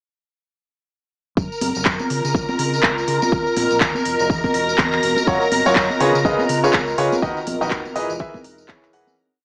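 A dry, gritty hardware recording with a small-speaker sound, light reverb and digital ambience frames this short, joyful and euphoric piano house piece with a swung groove. A punchy four-on-the-floor electronic kick, crisp programmed hats and claps from a house drum kit, and saturated tambourine and congas drive the beat. Shimmering vintage string-machine violins hold sustained chords with ensemble chorus, a round, dark fingered electric bass jumps octaves, and a warbling, lo-fi tape-like pad drifts in at 2.1 seconds, each pumping against the kick. A brilliant, woody upright piano arrives up front at 5.3 seconds with dotted-rhythm chords before the piece fades out from 6.6 seconds.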